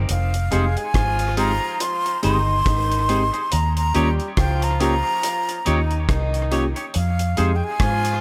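A foam-muted, round electric bass opens this lovers rock reggae excerpt, joined at 0.1 seconds by a breathy jazz flute and a deep, dry reggae drum kit of hi-hat, tight kick and rim click. The tempo sits at a relaxed 70 BPM with a lightly swung sixteenth-note feel in F minor, and the mood is smooth and longing as the harmony moves from Fm7 to Eb7 and back to Fm7. Up front, the flute carries the melody with vibrato, a soft attack and lifted highs, trailed by tape echo, while the dark drums carry gated reverb and dub echo. At 0.5 seconds a distant, mellow horn section adds a tight second line, a chorused FM electric piano supplies soft, decaying accompaniment with a noise layer, and a clean, twangy electric guitar plays fingered stabs with dub echo. The piano and guitar drop out at 7.5 seconds, leaving bass, flute, drums and horns to carry the close in a small, lightly reverberant room.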